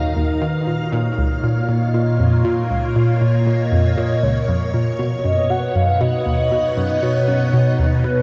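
A steady, straight 4/4 pulse carries this hypnotic, expansive stretch of sequencer-driven ambient space music, heard as a short section cut from a longer piece. Low in the register, an analog pluck repeats a riff with a fast attack and decaying, round tone, its detuned sawtooth and pulse layers given a folded edge and a trail of chorus and delay. Above it, a phased string machine holds sustained chords that swirl and warble with vintage character, sitting up front with ensemble chorus and phaser across a broad span. A mellow, horn-like synth lead, softer in the mix, sings a melody with a soft attack, vibrato and a filter sweep, washed in chorus and delay. The harmony moves from Ebmadd9 to Bbm at 0.9 seconds and on to Badd9 at 5.0 seconds, all bathed in a huge, dark reverb with a long 7.7-second tail that makes the space feel vast.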